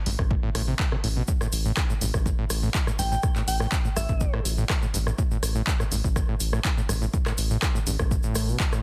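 Trippy and hypnotic, this short acid house excerpt rides a straight 4/4 pulse at 123 BPM. A squelchy, gritty acid bass riff with resonant filter plucks and tube-saturated distortion runs from the start, sitting over a round, deep analog bass held on A1 that pumps with sidechain and stays dark and up front. A punchy, tape-warmed drum machine supplies handclaps, hi-hat and rim click, anchored by a separate punchy electronic kick, while a grainy, bright tube shaker joins in the background at 1.3 seconds. Briefly, from 3.0 to 4.3 seconds, a soft, pure FM bell melody warbles between E5 and G5, colored by chorus and tape echo. The mix is dry and dense, with a heavily limited modern master.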